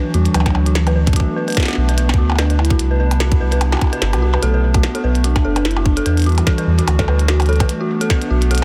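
The recording has a dense, heavily limited sheen with a light touch of room reverb, and it opens mid-flow as a brief cut from a longer IDM piece with an intricate, eerie mood. A deep, round sine sub bass and a tight electronic kick sit up front, the kick entering at 0.5 seconds. Around them, a glitchy drum kit with clicky hats, percussion blips and a tiny soft-clipped snare scatters echoes in a lightly swung 4/4. A warbling, lo-fi pad with a vintage, wave-folded character holds slow-blooming chords through a moody progression from Esus2 through Bm7, Cmaj9 and Em9. Over it, a dark, inharmonic FM bell spins arpeggios through phaser, delay and a filter sweep, while a mellow, detuned lead with tremolo and vibrato carries a nostalgic melody in the background.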